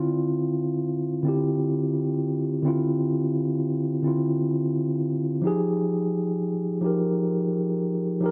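Yearning and late-night in mood, this short R&B fragment, cut from a longer piece, unfolds in 6/8 with a straight feel. A lone tine electric piano carries the entire passage from 0.0 to 8.3 seconds, its mellow, clean tone heard through its built-in speakers and placed up front in the mix. The harmony rests on a Dm9 chord before moving to Fm9 at 5.4 seconds, a shift that deepens the wistful atmosphere. The part sits in a moderate register, spanning D3 to Bb4. The recording is dry and close, with little reverb, evoking an intimate 1970s-style studio sound.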